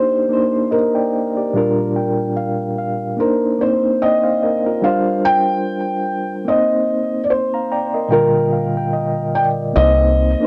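A felt-muted upright piano carries the melody from the first moment, its soft, intimate tone dulled by thick felt and a low-pass filter, with audible action noise and an analog delay trailing it. Beside it, a reedy electric piano plays the accompaniment through its built-in speakers, shimmering with fast tremolo and softened by a cassette tape character and its own low-pass filter. This short lo-fi hip hop excerpt moves at a relaxed 73 BPM in 4/4 with a gentle 16th-note swing, and its reflective, melancholic mood settles in C minor over chords such as Cm9, Gm7/Bb and G7sus4. Near the close, at 9.8 s, a deep dub fingered electric bass drops in briefly on a round, punchy low C, dark and up front. A small room adds a modest touch of reverb, while the dry, gritty hardware recording keeps the sound close and grainy.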